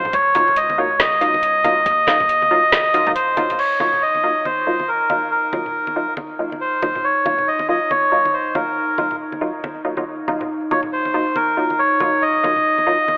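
Brooding and dark, this deep dubstep excerpt moves at 139 BPM in a swung half-time feel in Eb dorian, led by an up-front, reedy, breathy melodica carrying dub echo over an Ebmadd9 chord. Muted, detuned sawtooth chord stabs with subtle chorus and dub echo run throughout alongside bright, close acoustic congas, while a round, soft sub bass, a knocking overdriven kick and an overdriven garage kit with woody snare, metallic hats and crash drive the opening until the bass stops at 3.6 seconds. At 4.1 seconds a moody, slow-attack analog pad with chorus settles in beneath, all set in a lush hall reverb with a narrow, telephone-like tone.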